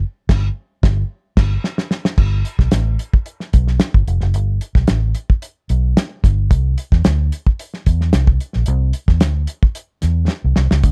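A straight 4/4 funk groove at 111 BPM opens this playful fragment cut from a longer piece, with a vintage muted fingered electric bass sounding from the start, round and foam-muted in its low register, and a cloth-damped, thuddy acoustic drum kit entering at 0.3 seconds with tight kick, medium-tuned snare, hi-hat and dark crash cymbal. The band hits an accent in the opening couple of seconds, capped by a drum fill that leads into the main groove at 2.2 seconds, and another fill arrives near the close at 10.3 seconds. Both parts sit up front in a dry, close sound with little reverb, the drums smooth with a rolled-off top and the bass dark and amped.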